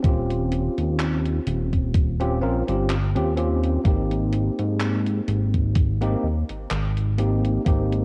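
A dreamy, nostalgic vaporwave fragment opens with a barky, bell-like tine electric piano carrying chorus, tape echo and 12-bit sampler grit over a glossy, detuned synth bass with tube saturation, a thumpy up-front electronic kick and a faint 80s drum machine of gated handclaps and hi-hat, all drifting from Eb13 to Abmaj9 at 3.9 seconds in a dark cassette-tape production with light digital ambience.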